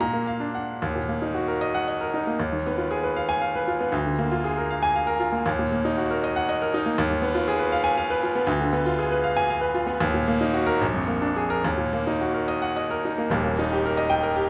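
A solo grand piano opens on a single Bb chord before plunging into a stormy, agitated classical study in 6/8 with free, rubato timing, its brilliant, up-front tone spanning from the deep bass to the upper treble with the hammers' action noise clearly audible. The minor-key harmony churns through half-diminished, dominant and diminished chords, and at 13.3 seconds a new section turns to a major chord just before this fragment of a longer piece cuts off at 14.5 seconds. A wet recital-hall reverb surrounds the close, polished instrument.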